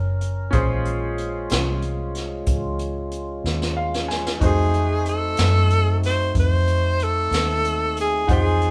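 A slow 12/8 blues at 62 BPM in Bb minor, soulful and mournful, opens with a brilliant, woody, slightly detuned upright piano with audible action noise and a fat tonewheel organ through a slow rotary speaker over a round, punchy, foam-muted electric bass, while a brushed drum kit with a boomy kick joins at 0.2 s, drums and piano share a fill at 3.4 s, and a clear, close-miked tenor saxophone enters up front at 4.5 s with vibrato and scooped notes, the band playing live in a stone room with moderate reverb.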